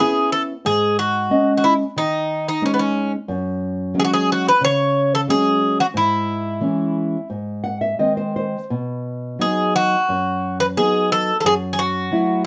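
A picked Greek bouzouki carries the longing, mournful melody from the opening moment, its metallic double strings and occasional octave-doubled courses sitting up front alongside a small, thumb-plucked nylon-string guitar with audible finger squeak. This fado-style ballad moves in a rubato 4/4 around 89 BPM, with uneven beats, tuned to A4 = 442 Hz. The harmony passes from C#m7 through G#sus4, F#sus2, C#m/G#, G# and B toward F#m7, and the guitar steps forward with a brief fill from 7.3 to 8.7 s as G# gives way to B. Close, detailed miking and a moderate studio reverb keep this passage, cut from a longer piece, intimate and clear.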